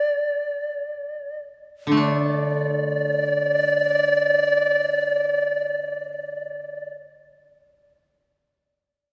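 Set in a lingering church reverb, this calm, austere excerpt of Japanese traditional chamber music opens with an up-front bamboo shakuhachi alone, airy and reedy with vibrato and a soft attack around D5 as the pace slows over the first 2.0 seconds, before a fingerpicked, woody koto enters at 1.9 seconds with a close, dry accompaniment between D3 and D4.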